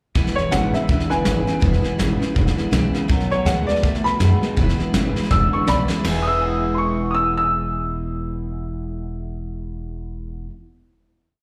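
Rockabilly with a rollicking, upbeat swing, heard as a short whole piece captured live through a club's PA with light reverb and small-room ambience. A soft brush kit sits up front with a fat snare and punchy kick, driving a train-beat groove and closing with a fill around 5.3 seconds before it stops at 6.1 seconds. An upright bass plays a woody, plucked quarter-note figure on steel strings, while a jumbo steel-string acoustic guitar strums eighths in open chord shapes, bright and full-bodied with audible finger squeak. Through a small old amp, a twangy, slightly broken-up electric guitar picks a boogie figure on root, fifth, sixth and seventh, coloured by ensemble chorus and slapback echo. Up front, a clear but worn upright piano, slightly detuned with short sustain, carries a lick-based theme that returns, also treated with slapback echo, as the band moves from E to B7 and back before ringing out on a final chord from 6.0 seconds.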